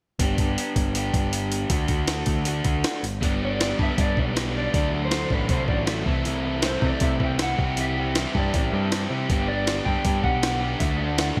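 A gritty, pitched-up jungle sampler-style drum kit sits up front in this carefree, upbeat indie rock excerpt at 158 BPM in straight 4/4. Its thumpy kick, high-tuned snare and hi-hat are compressed, tape-warm and treated with gated reverb. From 0.2 seconds an overdriven, picked electric guitar plays a riff bathed in lush chorus, while a growling, overdriven picked bass holds down the low end. At 3.2 seconds a second overdriven guitar riff joins in the background with subtle chorus and delay, and moments later a dark, clean, fingered electric guitar carries the melody with its own subtle chorus. The chords move from G to D, pause briefly, then cycle through G, D, Am/C and C before returning to G and D, all framed by light reverb and bright 1980s-style digital production.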